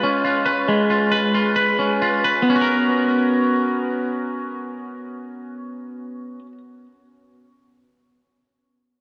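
Drenched in a huge, wet ambient reverb, this melancholic and ethereal dream pop fragment, cut from a longer piece, features a single clean, twangy electric guitar up front picking arpeggios through lush chorus and delay, slowing down over the first 2.5 seconds before moving from C#7/G# to F#add11/B.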